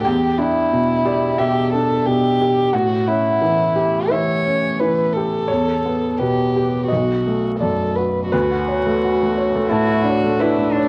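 A dark, bowed violin carries the melody up front in this short cut from a longer neoclassical piece for piano and strings, its sul tasto tone soft in attack with a light vibrato and a smooth top, heard close and intimate through a cassette tape effect. Beneath it, a felt-muted upright piano supplies the accompaniment, mellow and thin-felted, sitting just as far forward. The mood is melancholic and reflective, moving at 87 BPM in 4/4 with a rubato feel in E dorian, the harmony passing through Em7, A7, Em and B7 before settling on Dmaj7 at 8.3 seconds. Near the close, at 9.7 seconds, a single cello enters with a second line, pure and floating in its own sul tasto voice. The whole sits in a small room with light reverb, carrying the character of a home recording on cassette touched by vinyl crackle.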